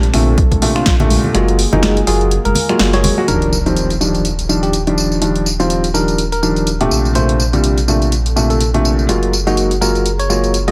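Deep house at 124 BPM with a sunny, soulful swing, cut from a longer piece, where soft felt-muted upright piano stabs sit up front over a deep sine-and-octave sub bass, both pumping against the sidechain, while a very quiet detuned sawtooth pad holds chords from Bbmaj9 through Gbmaj9 and Ebmaj9, a punchy analog drum machine ticks with snaps, hi-hat, snare and tambourine, an overdriven kick appears only briefly at 0.4 seconds, thin-skinned congas patter in the background until 3.2 seconds, a bell-like tine electric piano carries the melody through dub echo, and a distant electronic impact marks the shift at 3.3 seconds, all in light reverb.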